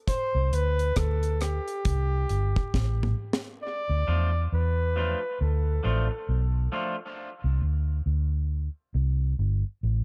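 A light reverb gives this short dub reggae passage, cut from a longer piece, a spacious yet heavy sound at a slow 68 BPM in 4/4 with a swung sixteenth-note feel in D dorian. A dry, acoustic drum kit sits up front with a high-tuned snare, tight kick, hi-hat, rim clicks and toms, playing through an opening break that ends in a drum fill before the kit drops out at 3.5 seconds. Underneath, a dark, round, foam-muted fingered electric bass, amped and up front, holds the low end through to the close. A flugelhorn carries the solo melody in a pop style, its scooped notes sounding distant and roomy and trailing tape echo. The harmony moves from C5 to Dm at 3.6 seconds, and at 4.1 seconds a bright, twangy clean electric guitar enters with picked accompaniment, also carrying tape echo, before the harmony returns to C5.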